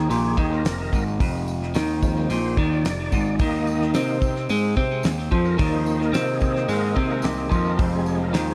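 A straight 4/4 groove from a damped 70s drum kit with a fat snare and tight kick drives this hypnotic, mysterious psychedelic rock excerpt. Over it, a gritty overdriven tonewheel organ solos in thick sustained chords through a slow rotary speaker and chorus vibrato, a clean picked electric guitar plays an up-front riff coloured by phaser and tape echo, a dark, round fuzz bass holds the low end, and a jingly tambourine with tape echo sits in the background of an echo-heavy mix moving from Fm to Eb5 and back to Fm.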